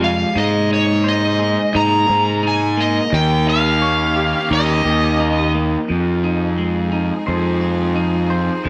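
Cathartic and cinematic, this short post-rock cut from a longer piece moves at 87 BPM in a straight 4/4, centred on F minor. An overdriven slide guitar carries the melody up front with a bright edge and a slapback echo, then stops at 5.5 seconds. Beneath it, a fuzz-drenched fingered electric bass growls prominently in the low register, while a clean, compressed electric guitar picks twangy arpeggios through its own slapback echo. A lush, distant studio string section holds bowed chords with vibrato in the background. The harmony passes from Abadd9 to Eb7 before settling on Fm7 at 5.9 seconds, where the closing passage begins, all within a light reverb.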